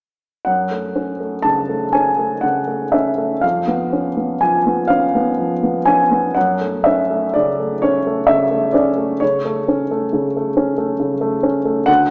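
An upright piano, placed up front with a woody, intimate tone and audible action noise, carries this short passage from a romantic nocturne entirely alone, sounding from 0.4 s to 12.1 s. The mood is wistful and mournful, and the playing moves with a flexible rubato over a 12/8 metre. The piano spans from deep bass notes up into its upper middle register, and its harmony leaves home, reaches a dominant colour around 3.4 s, then settles back around 6.4 s. A moderate concert hall reverb gives the instrument a sense of space behind its natural, close sound, while the overall recording has the narrow character of a small speaker. Cut from a longer piece, the passage feels like a single searching phrase rather than a complete statement.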